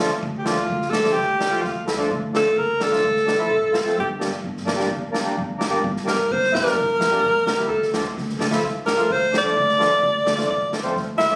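A clear, close-miked alto saxophone plays an up-front, jazz-style solo with light vibrato and scooped notes from 0.4 s, over a reedy, mellow accordion, a woody, thumpy pizzicato upright bass and an airy street-band drum kit with a boomy kick and medium-tuned snare, in this bittersweet, festive klezmer passage that moves from Dm to Gm and back, wrapped in moderate studio reverb and captured by a phone in the room.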